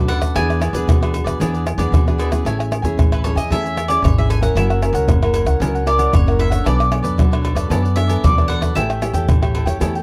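A dry, close recording in a 1970s studio style carries this festive, sunny samba and choro excerpt, where a bright, double-strung bowl-back mandolin picks the melody and takes a solo from 2.5 s until 10.0 s, over crisp picked cavaquinho, full-bodied fingerpicked nylon-string guitar, woody pizzicato upright bass, and up-front percussion of agogo bells, pandeiro, tube shaker, tamborim and a tight surdo struck with hard hands.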